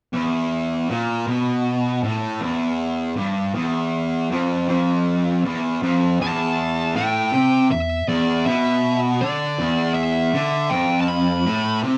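The recording has the feel of a band playing live together in a small room, with a moderate ambience that lends the sound some air. This is a sludgy, heavy metal passage in E phrygian, cut from a longer piece and moving at a slow 80 BPM in a straight 4/4. A double-tracked fuzz guitar sits up front from the first moment, opening on an E5 chord and grinding out a low riff with a warm, distorted picked tone. At 6.2 seconds a second fuzz guitar enters high above it with a darker, picked melody that stays quieter than the riff. Both guitars carry on together until the lead drops out at 11.8 seconds, and the riff guitar plays on to its final note at 12.0 seconds.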